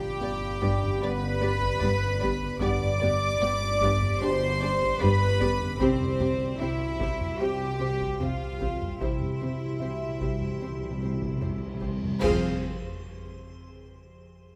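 Ominous and mysterious, this slow 75 BPM suspense film-score excerpt sets up-front rich symphonic cellos over dark double basses, an intimate chamber cello riff, a lush viola section, two floating sul tasto violin sections carrying the melody and a second line, mellow French horn chords, an icy crystalline glass pad, an eerie warbling metallic drone and a delicate bell-like celesta, with saturated taiko drums joining at 0.6 s, round soft-mallet timpani entering at 5.8 s, and a bright cymbal swell with clash cymbals and concert bass drum arriving at 9.0 s, all moving from G to C to F minor on a moderate scoring stage.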